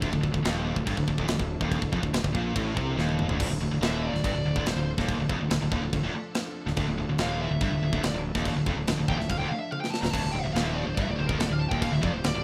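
A tight, up-front metal drum kit drives this relentless, dark heavy metal fragment, its saturated, gritty sound pairing a tight kick and medium-tuned snare with bright cymbals, toms and crashes in a big room, and fills arriving at 3.0 and 9.7 seconds. Beneath it, a growly, fuzz-soaked fingered bass plays in its deep register, while two high-gain distorted guitars, one of them scooped, pick a low riff from the background. A very quiet, double-tracked semi-hollow guitar adds a warm, overdriven layer to that riff. At 3.8 seconds a dark-toned high-gain lead guitar enters with a soaring solo, its distortion trailed by digital delay. A very quiet sweeping pad holds sustained chords throughout, its detuned sawtooth and ring-modulated tones evolving with a resonant filter swell, slow attack and chorus. Light reverb frames a rough home-demo mix that has the raw feel of a section cut from a longer piece.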